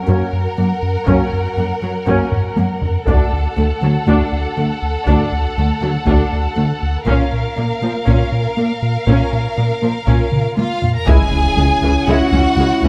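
Heavy, saturated taiko drums enter at 1.1 seconds beneath lush vibrato violins, an intense viola section, focused cellos, a deep analog bass riff and distant mellow horns in this vast, tense hybrid orchestral and electronic film cue at 120 BPM, building through a filter sweep over F#, D and A#m until a huge, dark impact at 11.1 seconds lands on C#m with woody double basses and a soft tuba.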